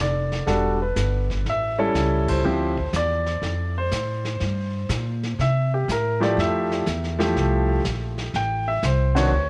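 A swinging jazz piano trio excerpt in F major at 122 BPM, where a clear, intimate baby grand with audible action noise and a touch of tape echo carries the melody over a woody pizzicato upright bass, while a vintage brush kit with dark cymbals and a punchy kick enters at 0.3 seconds, all set in a small room with light reverb and band accents at 2.2 and 9.1 seconds across changes from Em11 and A7 through Dm9 to a closing Fmaj9.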